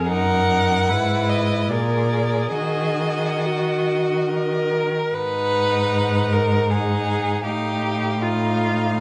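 In a rubato 3/4 at 66-80 BPM, this yearning, solemn fragment of a slow romantic movement for string quartet sets a distant first violin singing the melody between D5 and Gb5 with vibrato and portamento over a rich, focused second violin line, a smooth, even viola accompaniment and an up-front cello bass whose warm, expressive tone also slides between notes, each part bowed by a single player in a moderate recital-hall reverb as the harmony moves from Ebm/Gb through Bb7 to Abm7 and F7/A.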